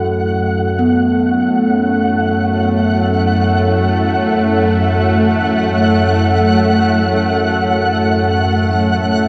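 Cavernous and dark, this dark ambient drone drifts in free time around F# minor, and it is cut from a longer piece that holds on a single F# minor chord. A tense, nasal bowed-like drone sits up front in the low register, its string-like sawtooth tone bright, detuned and shaded with vibrato and a layer of noise. Behind it, a deep, moody pad warbles with a vintage chorus, sustaining chords in the background until 9.3 seconds. A bronze gamelan-type metallophone, struck with padded disc mallets, spins mellow, ringing arpeggios through a delay until 8.1 seconds. High above, a flickering granular texture holds one F#, its grainy shimmer thickened by lush chorus. The dreamy mix is soaked in a wet cathedral reverb with a 5.2-second decay.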